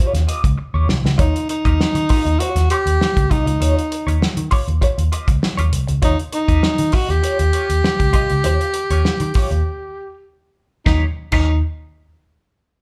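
A clean, compressed electric guitar colored by wah and tremolo opens this strutting 99 BPM funk excerpt in Eb mixolydian on an Eb9 chord, joined at once by a dark, round, foam-muted picked bass and an up-front soul drum kit with a fat snare, tight kick and rolled-off top, whose fill at 0.6 s leads to the entrance at 1.2 s of a breathy, whispered alto saxophone melody, intimate and jazzy with light vibrato, before a break at 9.7 s, the band sounding as if it plays live together in one room within a moderate studio reverb.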